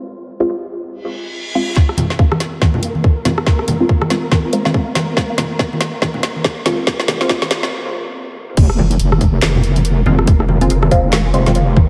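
Dark and brooding, this deep dubstep excerpt in F minor moves at 141 BPM with a swung half-time feel, opening on a muted, nasal filtered dub chord stab with phaser, tape and dub echo, a brief reverse cymbal, then a tight, up-front electronic kick, a deep house kit with woody snare and dark hats, soft-handed congas with dub echo and a grainy, flickering background texture building under a filter sweep until a break and the drop at 8.6 seconds, where a heavy, saturated wobble bass on F1 with chorus joins in, all bathed in dreamy cathedral reverb.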